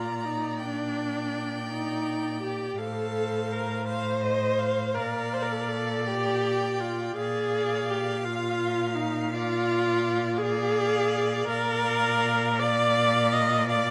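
Classical string quartet music in a slow romantic movement, this elegiac, solemn passage unfolds at 55 beats per minute in dotted quarters, in 12/8 and Bb major, with a rubato feel. The first violin carries the melody from D5 to Bb5 with a rich, smooth and even vibrato tone that sits somewhat distant, while the second violin traces a warm, expressive second line between C5 and F5, sliding between notes with portamento. The viola, placed up front and louder than the violins, supplies the accompaniment from D4 to Eb5 with a warm, expressive sound and its own portamento. Beneath them the cello holds the bass between A2 and Bb2, its rich tone shaped by vibrato, soft attacks and gliding portamento. All four players bow together throughout the 13.9-second fragment, cut from a longer piece, as the harmony moves from Eb/Bb through F/A at 2.8 seconds to rest on Bb at 5.0 seconds. A moderate recital hall reverb frames the quartet.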